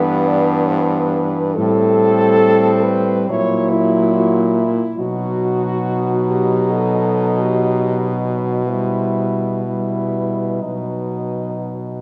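A horn quartet opens together at 0.0 s, four French horns playing a lyrical, elegiac classical passage in E minor, in 4/4 at a rubato 58-71 BPM. The melody sits on top in a dark horn with light vibrato and a smooth upper edge, ranging from E4 to D5. Beneath it, a clear, soft-attacked second horn carries its own line from B3 to E4 and sounds distant and roomy. A mellow, close-miked horn supplies the accompaniment, while a warm bass horn with light vibrato and a gentle attack sits up front in the low register, between G2 and B2. The yearning harmony moves from Em/G through Am7 and F#7/A# to B, then to Em/B and back to B, all within a wet recital hall reverb of 1.5 s that places the group further back in the room, in a passage cut from a longer piece.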